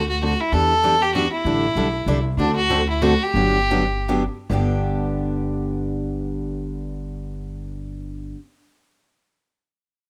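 A swung 3/4 lilt drives this lively, charming bit of acoustic string swing in G major, moving between 136 and 194 BPM and slowing down from 2.4 seconds. A clear, earthy bowed violin with light vibrato carries the melody until 4.1 seconds, over a dark, full-bodied picked dreadnought guitar, a second, bright guitar that joins at 0.5 seconds with audible finger squeak, and a woody, thumpy pizzicato upright bass on gut strings. The rough home-demo mix sits in moderate studio ambience, with plate reverb on the violin and both guitars.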